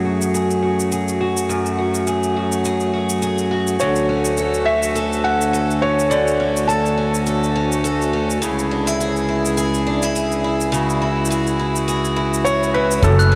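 A reedy, breathing harmonium sits up front with sustained chords in this wistful, delicate folktronica excerpt at 104 BPM with a light 16th-note swing, joined by boxy picked archtop guitar arpeggios through a low-pass filter and delay, crisp electronic shaker and hi-hat, and a soft, felt-muted upright piano melody with delay entering at 3.8 s, as the chords move through F#madd9, Dmaj7 and C#m, before a woody pizzicato upright bass, a dark brushed kick and a bell-like glockenspiel struck with brass mallets arrive near 13.0 s, the mix soaked in a dreamy, huge ambient reverb.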